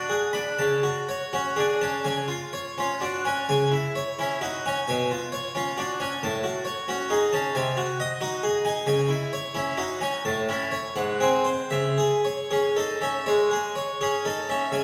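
Moving in a flexible rubato over a steady four-beat metre, this short passage from a longer baroque-style suite movement carries a solemn, grave mood. A lone harpsichord in the Flemish style plays throughout, its three sets of strings giving an airy, full, brilliant, plucked tone that sits up front. The part spans from G#2 up to B5, filling the low register and the upper treble alike. The harmony moves from Bm and F#m/C# toward C#, then settles into a darker stretch of C#m, C#7/B and F#m/A before G#7/B# leads back to C#m. A turn through A and G#7 brings a final return to C#m at 11.7 seconds. A generous hall reverb adds a halo around each note, lending the playing a resonant, churchlike sense of space.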